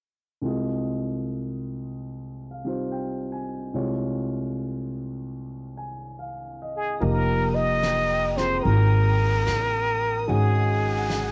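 Heard through a home cassette recording with light reverb, this melancholic, smoky jazz ballad in F minor drifts along at 73 BPM in 4/4 with a swung eighth-note feel, cut from a longer piece. A concert grand piano opens alone at 0.4 seconds, natural and up front with a deep low end, moving from Fm9/C to Dbmaj7/C. At 6.8 seconds a plunger-muted trumpet takes the solo melody, brilliant yet smooth on top, with a forceful, punchy wah-wah bite, vibrato and plate reverb. From 7.0 seconds the harmony shifts to Fm11 and then Ab5 as the rest of the band joins. A woody pizzicato upright bass with steel strings sits up front, and a vintage brush kit with a fat snare and hi-hat breathes in a small, pumping room. Behind them, a dark chamber string section holds bowed sul tasto chords with light vibrato, intimate and close yet kept in the background.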